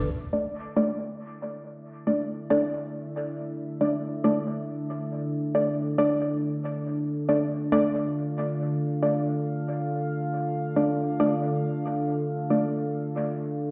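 A dark analog pad with a sub octave and a slow attack opens this cavernous, heavy dubstep fragment in D minor at 138 BPM, its sustained chords moving under a filter sweep through chorus and phaser, while from 0.3 seconds a muted, deep filtered chord stab with a fast pluck attack adds decaying sawtooth hits colored by chorus, cassette tape grit and dub echo until 12.6 seconds, the swung, half-time feel sitting in wet spring reverb and the stony ambience of a big sound system in a bare room.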